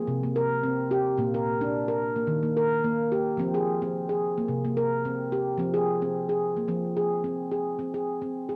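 A solo handpan, ringing and mellow with the nitrided-steel sound of soft fingertips, sits up front through an analog delay in this gentle, meditative world piece at 109 BPM in F dorian, lightly swung and cut from a longer work, moving from its opening passage to a new section at 6.7 seconds, all captured as a vintage, band-limited home cassette recording in a short, wet booth ambience.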